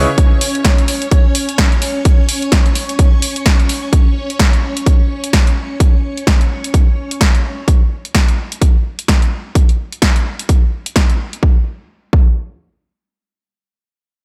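An up-front, overdriven electronic kick drum with a layered, punchy sound drives this bittersweet, soulful piano house excerpt at 128 BPM in 4/4 with a 16th-note swing, alongside an analog drum machine's punchy snare and hi-hat, also overdriven and re-recorded in a large room, while a shimmering, vintage string machine holds soft-attack violin chords with ensemble chorus and sidechain pumping until 7.7 seconds, the whole mix kept dry.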